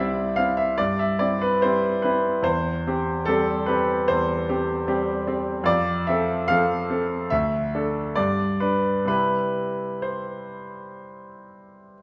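A romantic-era classical character piece for solo piano, this twelve-second excerpt from a longer work is passionate and lyrical, unfolding in C major at 63-76 BPM in 4/4 with a free, rubato feel. A grand piano carries the whole passage alone, its tone clear, smooth and vintage, sitting up front and spanning C2 to F5. The harmony moves from C through C/E and F, touches a D5 chord at 7.3 seconds, then passes through G before settling back on C at 9.1 seconds. A wet recital hall reverb with a 1.5-second decay surrounds the instrument, giving the playing a generous sense of space.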